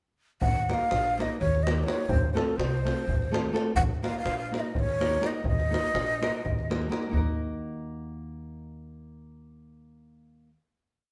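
Recorded live by a band in one stone room with moderate reverb, this complete piece is a fiery, virtuosic Balkan wedding-band tune in a straight 7/8 at 249 BPM (counted in eighths), in Eb dorian with a sharp fourth. A breathy, end-blown ney leads up front with tongued, expressive motifs in sentence phrases and vibrato. Beneath it, a woody pizzicato upright bass plays roots and fifths on the main beats, a deep davul keeps a two-stick pattern, and a warm, fingerpicked nylon-string guitar plays off-beat triads as the harmony moves from Ebm to F and back. The ney stops at 6.7 s, the final chord arrives at 7.1 s, and the davul drops out at 7.4 s, leaving the bass and guitar to carry the final chord.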